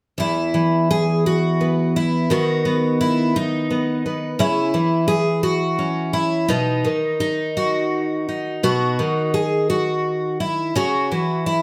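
A close, woody sound in a moderate studio room opens this brief folk excerpt, where a lone picked twelve-string acoustic guitar with old strings shimmers through its octave-doubled courses under a touch of slapback echo. Played rubato in a gentle 6/8, the peaceful passage moves from Esus2 through B/D# and C#m to a lingering B before settling back on C#m near 10.8 seconds.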